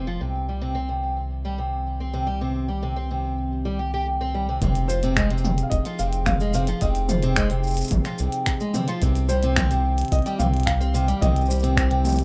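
This wistful, autumnal folktronica excerpt in C minor at 109 BPM opens with a shimmering, octave-doubled fingerpicked twelve-string acoustic guitar playing arpeggios up front over a round, deep analog bass with tube saturation, joined at 1.6 seconds by a warbling, detuned tape-like pad holding sustained chords in the background. At 4.6 seconds a soft electronic kick and a minimal click drum kit of finger snaps, clicky hi-hat, shaker and toms enter, and a felt-muted upright piano with delay soon carries a mellow, intimate melody as the chords move from Cm to Fm7 and back to Cm. Finger squeaks on the filtered, delayed guitar and a light reverb give the mix the rough feel of a home demo.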